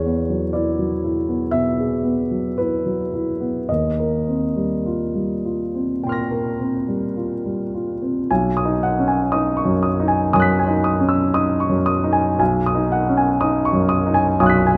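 Serene and luminous, this brief cut from a longer impressionist solo piano piece drifts at a rubato 50-62 BPM in 4/4, its lush chords moving from E9 to Eb69 before settling into B major at 8.3 seconds. The concert grand sounds up front and vintage, with a deep bass and smooth tone spanning B1 to B6. A moderate concert hall reverb gives the sound a soft, airy glow.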